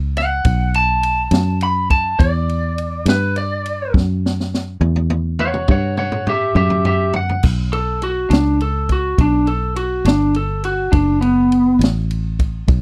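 Slow blues in a straight 12/8, mournful and smoky, heard in a short passage cut from a longer piece. A lightly driven lead guitar carries the melody as a solo throughout, its picked tone twangy and slightly broken-up, compressed and sitting up front. Underneath, a fingered electric bass gives a dark, round, foam-muted foundation, while a swinging big-band drum kit with a punchy kick, high-tuned snare and dark cymbals fills out the groove, working across crash, ride and toms and adding a drum fill from 3.9 to 7.4 seconds. The harmony moves from B5 through Em7 and F#5 before settling on Bm7 at 7.4 seconds, where the passage begins again. The sound is dry and close, like a 1970s studio session, with every part placed near the listener.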